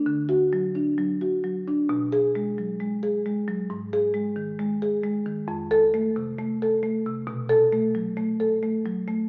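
The rhythm moves in an unhurried, straight 4/4 at 67 BPM, giving this short excerpt from a longer contemporary classical piece a flowing, warm feel. A solo marimba played with soft mallets carries everything from 0.0 to 9.3 seconds, ranging from F2 up to A4. Its padauk bars sound woody, round and mellow, with an airy quality, and the instrument sits up front in the mix. The harmony passes through D, B5, G#5, F and back to B5, ending on the B5 chord at 7.3 seconds. A moderate recital hall reverb surrounds the playing, though the overall sound has the character of a small speaker.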